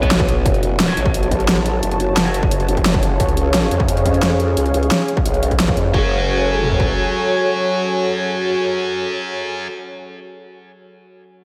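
Dark technical drum and bass at 175 BPM in F# harmonic minor, this tense, futuristic excerpt pits an up-front growling, wobbling bass and a layered electronic dubstep kit with a distorted kick, huge snare and bright hats against high-gain guitar stabs and two slow-attack pads, one deep and moody, one airy and breathy. Filter sweeps move through the deep pad and guitar until 5.9 s, the hats and snare stop at 5.8 s, and the bass, kick and toms drop out at 6.9 s. The guitar and pads then ring on in a dreamy, reverb-soaked hall over F#m and C#.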